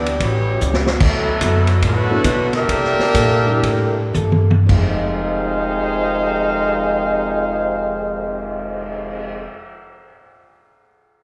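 Big band swing with a swinging, dramatic mood, cut from a longer piece: a clear, present trumpet section carries the melody over a veiled, cup-muted trombone section, with a woody, growly upright bass and a vintage drum kit whose dark cymbals, high-tuned snare and punchy kick sit up front. A boxy, picked acoustic archtop guitar sits in the background, and a baby grand piano with short sustain enters at 2.1 seconds behind the horns. The band slows down between 1.0 and 4.7 seconds, with drum fills leading into new sections, and the whole ensemble is heard from further back in a large, wet studio room.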